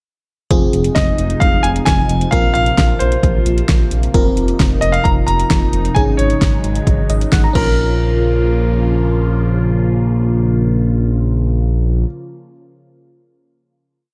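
Driving and cool, this short synth-pop piece in Bb minor runs at 132 BPM in a straight 4/4, with a punchy, overdriven deep house drum kit and a pulsing eighth-note synth bass up front. A glassy FM electric piano holds chords and plays a fill from 6.9 seconds, a swirling phased analog pad sustains beneath, and a concert grand piano carries a motif-based melody of call phrases over a pre-chorus moving through Fm7, Bbsus2, F7sus4 and Ab7sus4. The drums stop at 7.7 seconds as the music settles onto a final Bbm hit, all set in a dark production with light reverb.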